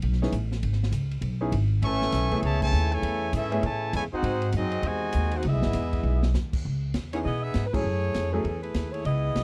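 A clear, present trumpet section carries the melody from 1.8 to 6.3 seconds over a distant, roomy trombone section in this sultry, swinging big band jazz piece at 199 BPM in C# minor, with woody pizzicato upright bass up front, a dark, smooth drum kit with a punchy kick, brilliant short-sustain upright piano accompaniment, band accents and a drum fill, and a mellow, close-miked saxophone section taking the tune from 7.1 seconds in a dry, close 1970s-style studio sound.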